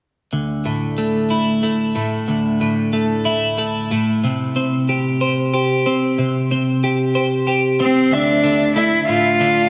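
A bright, twangy twelve-string electric guitar opens with clean, compressed arpeggios under subtle chorus and tape echo in this cathartic, melancholic 6/8 rock excerpt at 62 BPM, moving from Dsus2 to C5 before a rich, smooth bowed cello melody enters up front at 7.8 seconds and a slightly broken-up electric guitar through a small old amp adds faint lo-fi arpeggios with ensemble chorus at 8.1 seconds over Dmadd9, all in a dreamy mix soaked in church reverb.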